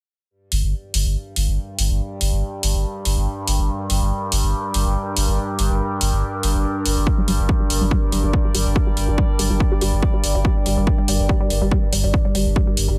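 Driving peak-time techno at 142 BPM in G minor, this industrial, intense excerpt opens with a saturated, thick sub bass on G1 and an analog-toned electronic hi-hat at 0.5 seconds, soon joined by a resonant drone of moving overtones and a warbling, nostalgic lo-fi pad that fades in with chorus, phaser and sidechain pumping, before an overdriven, layered kick arrives up front at 7.1 seconds, followed a moment later by a squelchy, ring-modulated blip pluck riff with dub echo and tube saturation, all over a dry mix sitting on a single G minor chord.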